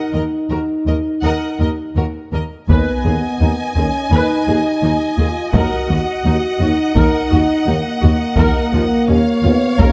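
Close, detailed microphones and a light reverb frame this dramatic, heroic passage of epic orchestral film score, cut from a longer piece. A symphonic violin section carries the melody with smooth, even vibrato, while a second, more distant violin section adds a soft-attacked line with expressive portamento. Up close, a lush viola section fills in the accompaniment, and an up-front French horn section holds mellow sustained chords. Underneath, a cello section sits in the background and a very quiet, rich double bass section doubles it on a low Eb, under chords moving from Ebm through Abm/Eb and Bbm/Eb. At 2.7 seconds a roomy, distant tuba with light vibrato joins the bass line, and a taiko ensemble struck with hard sticks enters in a small-room sound, lending the cue a heavier weight.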